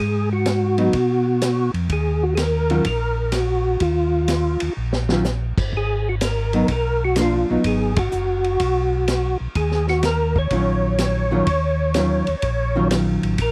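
A percussive tonewheel organ carries the melody up front, its round, dark tone sharpened by third-harmonic percussion and softened by chorus vibrato and a slow rotary speaker. This is a late-night, smoky soul jazz organ trio in Eb minor at 125 BPM, swinging in 4/4, cut from a longer piece. A second, mellow tonewheel organ holds down the bass with clean key click, also treated with chorus vibrato and slow rotary. A vintage drum kit enters at 0.5 seconds with a high-tuned snare, punchy kick and rolled-off top, while a picked, hollow-bodied archtop guitar comps from 0.8 seconds through Abm7, Ebmadd9 and Ebm9 chords. A drum fill at 4.8 seconds and a band accent at 7.9 seconds mark the passage, all captured in a dry, close 1970s-style studio sound.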